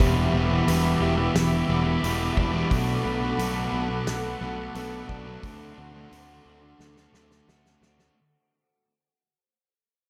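A wistful, blissful shoegaze and dream pop rock passage at 88 BPM in 4/4 fades out from its first moment, with a thick fuzz guitar riff and a crunchy overdriven guitar riff coloured by reverse reverb sitting behind a dark, round overdriven bass, a loose indie drum kit with a fat snare and punchy kick, a very quiet, bright, twangy twelve-string arpeggio and an airy, detuned sawtooth pad holding chorused chords over Em7, Bm7 and D7 inside a dreamy, reverb-soaked mix, until a drum fill arrives at 6.8 seconds.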